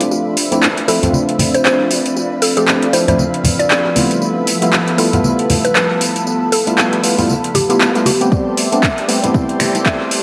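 This warm, moody deep house passage at 117 BPM opens straight into a swung groove, with an overdriven drum kit of snaps, handclaps, metallic hats and tambourine sitting up front. Bright bongos and congas played with soft hands join it, along with a smooth, detuned sawtooth pad and hollow, mellow organ stabs that ride a digital delay, both pumping against the beat. Behind them, a veiled, muted violin section adds texture, and a dark, very quiet FM bass with an organ-like tone anchors the Dm9 to G13 to Am11 progression. A woody, warbling mallet-like pluck carries the melody from 0.9 seconds, and a nostalgic, lo-fi tape-like pad with a sub octave drifts in at 1.5 seconds. At 8.3 seconds, a round, horn-like synth lead with phaser and vibrato takes over the tune as a deep, tape-warm electronic kick arrives, capping a build-up bathed in a lush hall reverb.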